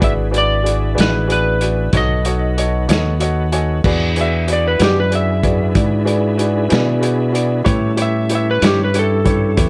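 Slow blues in a swaggering, laid-back 12/8 with a straight feel, taken from a longer piece. An electric slide guitar, dark and slightly broken-up and played with fingerpicks, carries the melody and takes a solo from 3.8 seconds to the end. A clear concert grand piano with deep bass and a vintage character accompanies, stepping forward with a fill at 2.9 seconds. Meanwhile a smooth tonewheel organ holds sustained chords in the background through a slow rotary speaker and chorus vibrato. Up front, a round, direct fingered electric bass sits alongside an acoustic drum kit with a small-room, lo-fi, muffled sound: medium-tuned snare, tight kick, hi-hat and crash cymbal, with a rolled-off top. The harmony moves through E7, B7 and A7, and light reverb gives the mix a little space.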